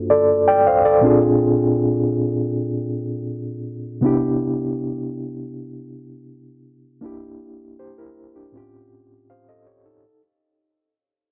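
Soul music with a smooth, bittersweet mood, this short cut from a longer piece features a reedy, mellow electric piano playing alone up front through its built-in speakers with a fast tremolo, moving from Gm7 through Bb9, Cmaj7 and Em7b5 to A7alt in light digital ambience while the whole passage fades out over its 10 seconds.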